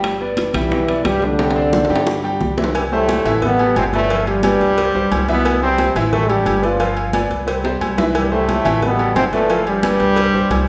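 A festive, danceable salsa excerpt opens with an open, clear baby grand piano comping over a woody, thumpy gut-string upright bass, dry metal-shell timbales and agogo bells, ringing high-tuned congas and round low-tuned bongos and cowbell set back in a live room, before an up-front trombone section enters at 0.5 seconds to carry the melody through drum fills around 1.4 and 7.6 seconds, all in a church-like hall reverb.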